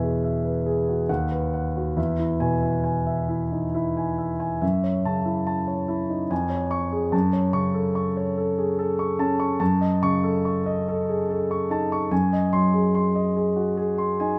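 In a three-beat metre pulled freely by rubato, this romantic character piece for solo piano moves with a bittersweet, passionate sway. A concert grand plays alone from 0.0 to 14.4 seconds, ranging from D#2 up to C#6. Its sound is warm and up front, with a deep bass and long sustain that let each harmony ring. The harmony opens on E and B/D#, turns to F#m7, C#/E# and F#m, and then moves to D#m7b5/F# and G#7/F#. Light reverb gives the piano a gentle sense of space in this brief passage from a longer work.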